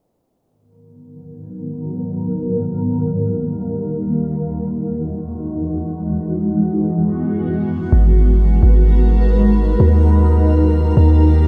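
Bathed in a lush hall reverb and dulled by a low-pass filter that sweeps through the opening stretch, this spacious, melancholic hip hop excerpt drifts in free time, cut from a longer piece. A cloudy, evolving granular pad, detuned and blurred with its own reverb and phaser, enters at 1.3 s and holds sustained chords that move from G#m7 through Emaj7 and F#7sus4. At 7.9 s a deep, boomy 808-style bass with a sine body and a noise layer arrives up front, its fast attack decaying against the pad's bright haze.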